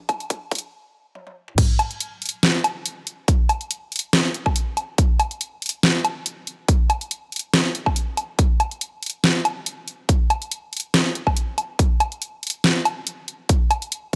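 Dubstep at 141 BPM in 4/4 with a half-time feel and a light swing on the sixteenths, this short cut from a longer piece sounds chaotic and heavy. It is built entirely from drums: a dubstep kit of crash cymbal, hi-hat, deep snare, toms and woodblock, paired with a punchy electronic kick. Both parts run from 0.1 to 14.2 seconds, layered, overdriven and set up front, with a small-room character from being re-recorded. A brief build-up opens the track, with drum fills and a stop before the drop lands at 1.6 seconds and carries through to the end. The mix has light reverb and a high-pass filter that keeps the low end trimmed.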